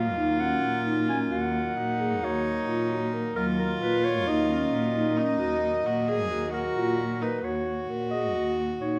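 Contemporary chamber music in an uneven 9/8 metre, this short passage from a longer piece moves at 264 eighth-note beats per minute in Eb minor, with a mood both urgent and pensive. A warm, classical-style solo clarinet carries the melody between Bb4 and Ab5, while a single bowed viola plays a pure, floating second line beneath it, played sul tasto with a soft attack. A lone bowed cello holds the bass up front, its tone focused and rich with vibrato, and a vibraphone struck with medium mallets, motor off, adds dark, metallic, ringing arpeggios from 0.2 seconds. A reedy, breathing pedal harmonium sustains chords in the background until 7.4 seconds, where the harmony shifts from Ebm to Ebm7 for the closing stretch. The ensemble sits in a moderate recital-hall reverb, captured in a church or concert hall setting.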